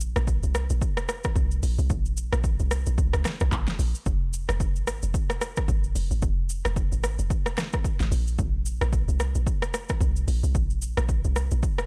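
Amapiano at 111 BPM in 4/4, with a loping 16th-note swing that gives this short excerpt a soulful, deep mood. A round, dark log drum bass sits up front, its fast attack and decaying tail carrying an FM bite and a faint noise layer as it moves between F1 and Db2. Alongside it, a layered, overdriven electronic deep house kit of kick drum, snare drum, handclaps, rim click, hi-hat and shaker is pushed forward in the mix, with a punchy kick and a fat snare. Both parts start together at the opening moment; the bass drops out around 11.6 seconds, while the kit carries on to the end at about 11.9 seconds. The sound is dry and gritty, like a hardware recording bounced to cassette tape, wrapped in a digital ambience.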